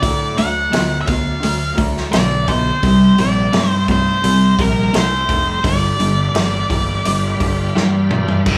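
A dark, up-front octave-fuzz lead guitar carries the melody in this gritty, driving blues rock and southern rock excerpt, its distorted, picked tone trailed by tape echo until it drops out at 7.7 seconds. Beneath it, a crunchy, double-tracked overdriven guitar plays a low riff while a growly, punchy fingered electric bass with fuzz and overdrive anchors the bottom end. A vintage acoustic drum kit with dark cymbals, a medium-tuned snare and a punchy kick keeps a straight 4/4 at 85 BPM, closing with a fill from 7.8 to 8.5 seconds. Far back in the mix, a very quiet overdriven tonewheel organ holds bright, shouting chords with key click, chorus vibrato and a slow rotary speaker. The harmony moves from D to C7 to G7 in G mixolydian, and the whole band sits in a small room with a moderate club reverb, cut from a longer piece.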